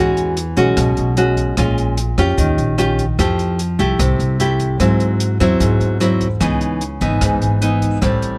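A fingerpicked nylon-string guitar, full-bodied and up front, opens this relaxed, romantic bossa nova fragment at 149 BPM alongside a woody, thumpy pizzicato upright bass on gut strings, with a dark jazz kit of hi-hat, boomy kick and rim click joining at 0.2 seconds. The guitar's classical-toned accompaniment moves through rich harmonies from E69 and A#m7 to Fmaj9, G#aug7 and C#m9, while the drums sit further back with a smooth, rolled-off top. Close, detailed microphones and little reverb give the short excerpt an intimate, dry feel.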